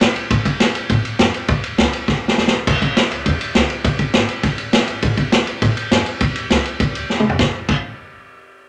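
A vintage acoustic drum kit sits up front in this rollicking, upbeat rockabilly excerpt in A major, driving a straight 4/4 at 203 BPM with a punchy kick, medium-tuned snare, dark cymbals and a rolled-off top, and it breaks into fills at 2.1 and 7.1 seconds. Behind it, a plucked upright bass with gut strings adds a woody, thumpy low end from E1 to A2, sitting in the background. A moderate large-studio reverb gives the pair a roomy sound as the passage moves into a new section at 7.4 seconds.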